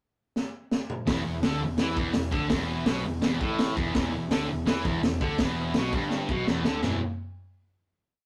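Garage rock with a rowdy, raw edge, this short whole piece opens with a pickup bar where the crunchy breakbeat drum kit of hi-hat, kick drum, snare drum and toms kicks in at 0.4 seconds with a fill. The kit sits up front with a high-tuned snare, tight kick and a saturated, gritty tone with a rolled-off top, pounding out a garage stomp groove. At 1.1 seconds the thick fuzz guitar lands on an E5 chord with a bright, double-tracked, picked single-note riff, loud and forward. Beneath it, the fingered electric bass is growly and overdriven, driving eighth notes in the background while doubling the guitar riff. Another drum fill arrives at 6.1 seconds before the band settles onto a final chord at 6.8 seconds. The whole thing has the rough feel of a rehearsal room, with light reverb and tube saturation.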